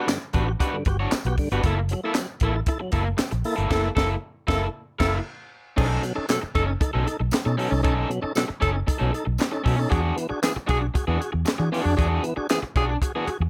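A clear tenor saxophone with pop-style vibrato takes the solo voice from 3.7 seconds, riding a playful, energetic funk groove in B mixolydian at 116 BPM in straight 4/4. Beneath it sits a vintage muted fingered electric bass, up front with a dark, round, foam-muted tone, and a crisp fusion drum kit with an airy, polished studio sound: high-tuned snare, punchy kick, hi-hat, handclaps and crash cymbal. A crunchy overdriven guitar, picked and warm, fills out the accompaniment. A tonewheel organ fires full, lightly driven stabs with key click through a fast rotary speaker, while a jingly, bright tambourine stays in the background. The band hits an accent as the saxophone enters and takes a short break at 5.3 seconds, as the harmony moves from Gmaj7 and F#7#9 to B9 and E9, all under light reverb in a clip cut from a longer piece.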